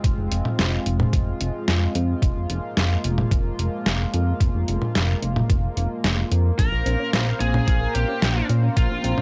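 A chorused synth bass stands out from the start, glossy and dark, its pulse and sawtooth tones pumping against the sidechain up front in this cinematic, nocturnal synthwave excerpt in F minor at 110 BPM in a straight 4/4. Beneath it, a shimmering, detuned pulse-width pad holds sustained chords with a slow attack, while a thumpy electronic kick and a detuned 8-bit drum machine with a medium-tuned snare, hi-hat and toms give the groove a tape-softened, sampler-style bite. The harmony rests on Fm until 6.6 seconds, when it moves to Bbmadd9. At that point a high-gain lead guitar enters with a distorted, picked melody soaked in tape echo and plate reverb, joined in the background by a round, tine-like synth pluck that warbles through gentle arpeggios. The whole excerpt carries the hazy, home-recorded character of cassette in a lightly reverberant space.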